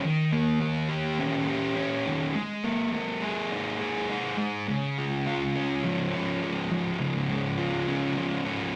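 Rock in 4/4 with a straight feel, this short excerpt cut from a longer piece carries a blissful, hazy mood. A thick fuzz guitar plays alone from start to finish, picked and double-tracked, sitting up front with a distorted, warm tone. It ranges from Db3 to Ab4, moving through Eb7 and Absus2 before settling on Db as a second section begins at 4.7 seconds. A wet studio reverb surrounds the playing, and the rough rehearsal-room quality of the recording adds a raw, unpolished character.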